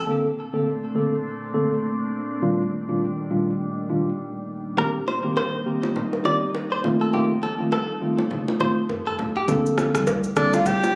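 Captured on a phone in the room, this sunny, breezy afrobeats fragment carries a club-like reverb and compression. A mellow tine electric piano sits up front through nearly the whole passage, moving through Bbmaj9, Ebmaj9/Bb, Cm7 and F7 in Bb major at 102 BPM with a swung 16th-note feel, while a glassy FM pad with ensemble chorus and its own reverb drifts beneath in slow-blooming, ethereal chords. A bright, direct-recorded electric guitar riff with delay sparks briefly at the very start and returns at 4.8 s, alongside saturated congas and bongos played with soft hands. An electronic afro-pop kit with a knocking kick, rim click, shaker and toms arrives with a fill at 8.3 s, and a thick, deep sub bass settles in at 9.5 s as the harmony returns to Bbmaj9. In the closing moments a breathy tenor saxophone steps forward with whispered, scooped, jazz-style notes and vibrato, giving the piece an intimate finish before it cuts off.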